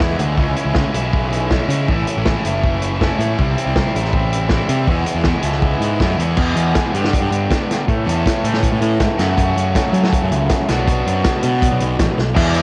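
Upbeat and jangly, this indie rock excerpt drives along at 160 BPM in a straight 4/4 in A major, with a bright, double-tracked overdriven electric guitar riff up front over a dark, round fuzz picked bass. A vintage drum kit with a punchy kick, medium-tuned snare, dark cymbals and a rolled-off top carries the cassette tape colour of a home recording in light reverb. The chords move from C#m through A, C and E into a second section at 6.4 seconds, and a drum fill at 12.2 seconds closes the cut.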